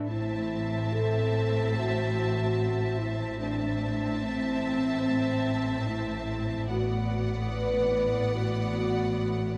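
Dark and dramatic, this slow cinematic passage in A dorian at 73 BPM sets a dark French horn section's sustained chords, the most prominent part, over a bass of dark, woody cellos in the background and warm double basses, while a rich, focused violin section carries the melody above a warm, expressive second violin line and smooth, even violas, the strings all bowed with vibrato in a moderate scoring-stage reverb as the harmony moves from Am to Bm/A at 6.7 seconds.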